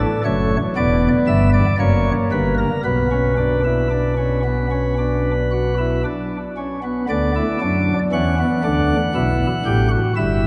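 A steady, straight 4/4 pulse at 58 BPM carries this brief, contemplative yet driving passage from a longer baroque-style three-part fugue in B minor, played by a solo pipe organ whose light flute stops sparkle up front with a crisp chiff, spanning from a deep E1 to F#5. The harmony moves through Em and F# to settle on Bm, and a new section begins at 7.1 seconds on Bm/D before turning to Em at 9.1 seconds. A cathedral reverb with a 4.6-second decay surrounds the bright baroque voicing with a long, resonant tail.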